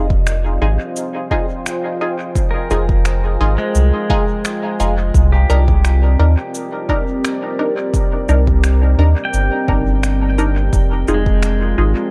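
Dry, with little reverb but heavy echo, this meditative ambient dub excerpt moves at 86 BPM in 4/4 with a light 16th-note swing, set in F dorian. A round, soft sub bass sits up front, carrying the low end under a punchy, layered electronic kick and faint electronic finger snaps and cabasa trailed by dub echo. A dark, full-bodied pad of detuned sawtooth and sine layers holds sustained chords through chorus and its own reverb, while a muted yet bright filtered chord stab plucks short hits coloured by phaser and dub echo. At 2.5 seconds a clean electric pedal steel guitar enters with fingerpicked slide arpeggios and volume swells, sent through analog delay. The harmony moves from Fm7 to Cm9 and back to Fm7, keeping the mood deep and unhurried.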